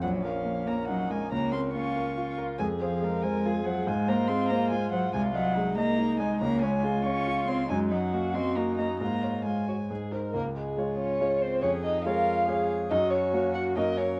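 A lively triple metre at 140 BPM drives this quick, graceful classical-period movement for piano quartet, heard as a cut from a longer piece that opens in Bb minor and turns to Db major from 5.1 s. A dark, woody violin carries the melody with vibrato, sounding distant, while a second violin, also dark but with light vibrato, soft attack, sul tasto bowing and a smooth top, sits close and intimate on a supporting line. The cello adds another second line with a clear, nasal, pure tone, played sul tasto with a floating quality. Up front, the clear grand piano supplies the accompaniment with a natural sound, its action noise audible. All four players run nearly the full length, the second violin stopping at 14.0 s, with a new section arriving at 10.3 s on a Db chord. Light reverb surrounds the ensemble, and the recording carries the worn, warbling character of old cassette tape with pitch drift.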